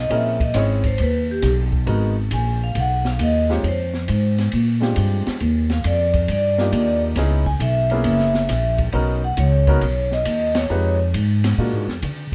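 Cool and late-night, this short excerpt of small-group swing and bop moves at a swung 136 BPM, with a vibraphone carrying the melody in ringing, metallic tones shaped by medium hard mallets, slow motor vibrato and a boxy small-room sound. A woody, dark pizzicato upright bass sits up front, while a concert grand piano with deep bass fills in accompaniment and an airy, polished drum kit of hi-hat, ride with dark cymbals, high-tuned snare and boomy kick keeps time. The dry, dark production shows off rich chord colours like Ebmaj9 and Bmaj9, and the band hits a shared accent at 10.5 seconds before the vibraphone drops out at 11.0.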